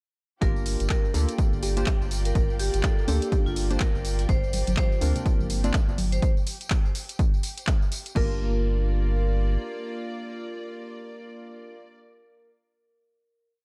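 A punchy four-on-the-floor electronic kick, programmed hats, claps, tambourine and crash open this moody, late-night deep house piece at once. Alongside them come a deep sine sub bass, syncopated detuned analog key stabs pumping under sidechain, a metallic hard-mallet vibraphone riff soaked in tape echo, clear bowed strings, and lush violins sitting in the background. A round, tine-like FM pluck slips in briefly at 1.1 seconds and bright congas drenched in dub echo appear around 4.5 seconds, all within an echo-heavy, nearly dry mix. At 8.2 seconds the drums drop away, and the sub bass lingers briefly before the keys, vibraphone and floating string section hold a final chord.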